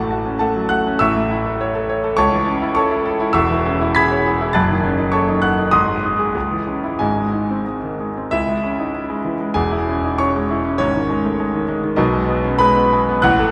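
Bathed in a wet cathedral reverb with a long 4.5-second decay, this passionate, agitated excerpt of a classical virtuoso piano study sets a solo concert grand, intimate and up front with deep bass and audible action noise, moving in a rubato 2/4 at around 90-105 BPM across a span from E1 to B6, settling into C# minor from 3.3 s and turning to a new section at 8.3 s that leans on C#m and G# harmonies.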